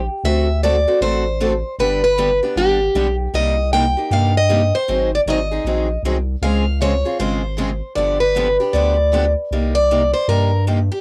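A home cassette recording with moderate booth ambience frames this bittersweet, swinging acoustic string swing piece in jazz manouche style, at 156 BPM in C minor. Up front, a picked plugged-in archtop guitar carries the melody with a bright, fresh-stringed tone, over a round analog bass that sounds deep, dark and sustained. Two picked steel-string acoustic guitars supply the accompaniment, one a boxy parlour instrument and the other a concert guitar sitting in the background with audible finger squeak; that quieter one stops at 9.2 s, as the chords run from D7 through Dbmaj7 and G7 to a Cm7 at 9.5 s.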